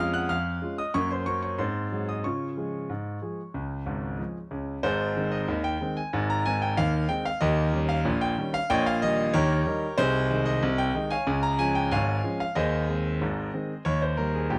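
Playful and jaunty, this short ragtime piano excerpt at 93 BPM in 2/4 features a solo concert grand piano with a clear, natural tone, deep bass and an up-front presence, captured by close, detailed microphones in a nearly dry room, moving from Db major to Ab major at 4.8 s and tuned slightly below standard pitch.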